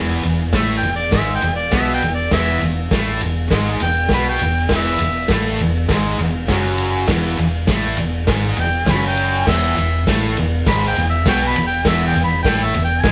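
A thick fuzz guitar riff opens this raw, swaggering garage rock excerpt, bright, distorted and double-tracked up front, with a dark, round hollow-body bass fingered underneath. A vintage kit joins at 0.2 seconds: punchy kick, medium-tuned snare, crash and ride, all heard through a muffled, lo-fi small-room sound with a rolled-off top. A jingly tambourine sits close but in the background from 0.5 seconds. At 0.6 seconds a warm, overdriven harmonica takes a pop-style solo, riding up front over the riff. The group sounds like a duo or trio playing live in one room in a straight 4/4, with moderate studio reverb.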